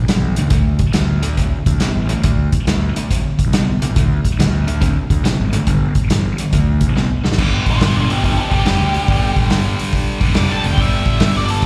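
A growly, fuzz-soaked fingered bass sits up front in this raunchy, gritty blues rock power-trio excerpt with a swung southern rock feel, alongside a bright, double-tracked overdriven guitar riff with slapback echo and a punchy vintage drum kit with dark cymbals in a pumping small room, and a drum fill at 7.0 seconds leads to a dusky octave-fuzz lead guitar solo entering at 7.7 seconds, the gig heard through the venue's PA with light recital hall reverb.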